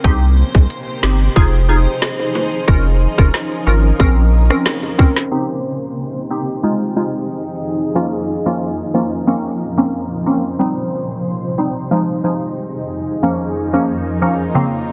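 A dense, heavily limited modern mix with light digital ambience and a low-pass filter frames this hypnotic, tough dancehall fragment in C phrygian, moving at 91 BPM in a straight 4/4. An electronic island pop drum kit sits up front, with a tight kick, woody snare, smooth hats and rim clicks carrying a tape-warm, 12-bit sampler grit, while high-tuned acoustic bongos tick very quietly beneath. A round sine sub bass anchors the low end until 4.5 seconds, and the kit and bongos drop out around 5.3 seconds. From there a filter sweep runs through the rest of the passage, leaving a crystalline, warbling wavetable pluck with detuned unison, ring modulation and chorus to carry the accompaniment over a cloudy, evolving granular pad that pumps to a sidechain and blooms in its own reverb. The harmony cycles steadily through Cm, Fm7, Db6/F and Bbmadd9, giving the whole fragment a circling, trance-like pull.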